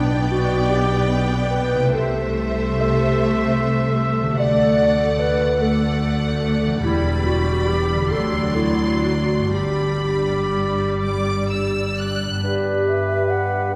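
A rubato 6/8 pulse at 39-52 BPM carries this tender, slow romantic orchestral movement in G major, where a focused violin section sings the high melody above a second, smooth violin line, a dark, roomy clarinet and expressive violas with portamento, while lush bowed double basses, background cellos and a ringing fingerpicked harp support them, until an airy flute, a clear oboe and a shadowy bassoon join at 12.4 s and mellow French horns add sustained chords at 12.5 s, the whole heard from further back in a wet concert hall.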